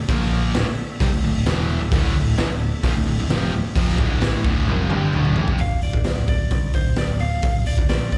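Hard rock in D minor at 131 BPM, driving and aggressive, this short cut from a longer piece opens with a very quiet tonewheel organ holding sustained chords through a slow rotary speaker. It is joined at once by a bright, distorted electric guitar and a sludgy overdriven guitar sitting back in the mix on a low riff with slapback echo, over a growly, punchy picked bass and a raw, gritty garage drum kit that sits up front with a punchy kick and a pumping small-room sound. After a drum fill, the rhythm guitars and organ stop at 5.6 seconds and a slightly broken-up lead guitar takes a high melody, dressed in plate reverb, slapback echo and analog delay, over bass and drums until 8.2 seconds. The whole thing has the sound of a live gig heard through the venue's PA.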